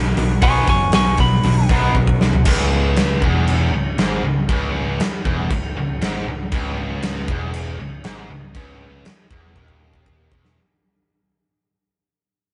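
A straight 4/4 hard rock pulse drives this heavy excerpt, cut from a longer piece, with a huge arena drum kit up front: punchy kick, medium-tuned snare, bright cymbals, toms and hi-hat ringing in a pumping hall room. Two tight, picked distorted guitars, one sitting in the background, grind out the riff above a growly, overdriven picked bass. A twangy, slightly broken-up lead guitar, compressed and up front, flashes a short high melody from 0.4 to 1.7 seconds during the opening solo passage, and a drum fill leads into the change at 2.5 seconds. From there a very quiet, double-tracked high-gain guitar thickens the riff while the whole passage fades out, and a gritty tonewheel organ through a slow rotary speaker returns faintly with sustained chords before a closing drum fill. The sound is that of a rough rehearsal room, with moderate reverb and saturation dulling the top end.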